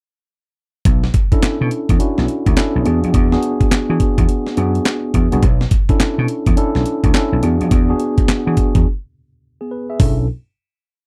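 Bouncy and slick, this short new jack swing piece rides a hard-swung drum-machine beat from a gritty, compressed breakbeat kit, with a thumpy kick, a medium-tuned snare layered with handclaps, hi-hat and toms. An amped, punchy vintage slap bass plays a swung synth-funk line full of muted ghost notes and chromatic approach notes, while a mellow tine electric piano enters at 1.3 seconds with clean, rootless syncopated chord stabs and short fills over Bm11 and E9. After a break from 8.9 seconds, the piece closes on a final Bm11 chord in a dry, close 1970s-style studio sound.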